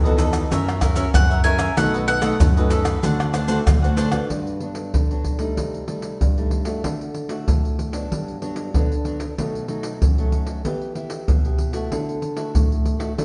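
Lively and festive, this samba and choro excerpt moves at 95 BPM in a straight 4/4. It opens on dominant chords such as B7, F#7 and D7, while a bowl-back mandolin takes a short, bright solo of double-string picking between 1.1 and 2.7 seconds. Beneath it, a crisp cavaquinho and a growling fingered electric bass, punchy and overdriven, both drop out around 4.3 seconds, where the music settles into G major on a Gmaj7 chord. From there a small, fingerpicked nylon-string guitar with fresh strings carries the harmony through Cm6, Dadd9 and Em. Maracas, pandeiro, tamborim and a tight surdo sit up front throughout, close and dry under soft hands. The band plays live together in a wet stone room with a 1.3-second tail, and the sound has a slightly dark top end.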